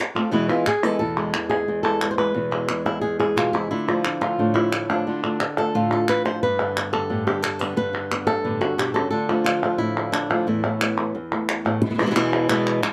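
From the opening moment, two flamenco guitars and palmas hand claps play together in this intense, mournful fragment of a longer piece, moving in a straight four-beat metre. The lead guitar carries the melody up front, fingerpicked on fresh strings with a warm acoustic tone that reaches from low E2 up to C5. A second guitar, thumb-plucked and set a little lower in the mix, punctuates the line with stabs between E2 and G4. The crisp palmas sit close and forward, their vintage, band-limited quality giving the rhythm an old-fashioned edge. The harmony travels from E through Dm, Gadd9, Dm again and Esus4 before settling back on E at 11.8 seconds, with close, detailed microphones and a touch of light reverb keeping the sound intimate.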